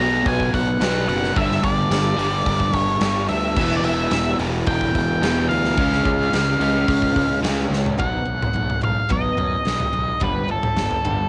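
A dark, distorted octave-fuzz lead guitar melody opens this restless, bittersweet quiet-loud alternative rock piece over a crunchy, double-tracked overdriven riff guitar and a growly fuzz bass, with a punchy rock kit with bright cymbals joining at 0.3 s and filling at 7.7 s before the riff guitar stops at 8.0 s and a warm picked steel-string acoustic guitar takes up arpeggios, all but the bass carrying the dry, home-cassette tinge of a tape recording.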